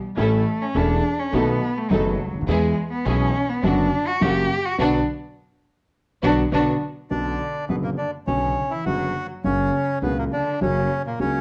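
Tango at 103 BPM in 4/4, played with a rubato, passionate and sultry feel in B minor, shifting to B harmonic minor at 7.1 s, in a short cut from a longer piece. A bowed cello opens alone, nasal and expressive with vibrato and portamento, carrying a solo second line up front until 7.1 s. A dark concert grand piano supplies mellow, long-sustaining accompaniment with deep bass, while a pizzicato upright bass on gut strings gives a woody, thumpy foundation, and a smooth, even studio string section adds rich bowed stabs with vibrato until 6.7 s, with a band accent from 4.8 s. At 7.1 s a reedy, bright bandoneon takes the melody, dry, full and close-miked at the front, over harmony moving from Bmadd9 to F#. The whole sits in a moderate large studio reverb and carries the worn, warbly pitch drift of old cassette tape.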